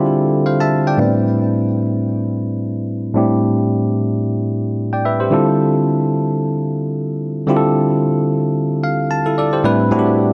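A bell-like, clean tine electric piano plays alone and up front through this hypnotic, soulful amapiano fragment in A minor at 111 BPM with a swung 16th-note feel, moving between Dm11 and Am11 chords through digital delay and light reverb in a dark production, while a low-pass filter sweep shapes the piano from 1.0 to 9.6 seconds and a short piano fill arrives at 8.6 seconds.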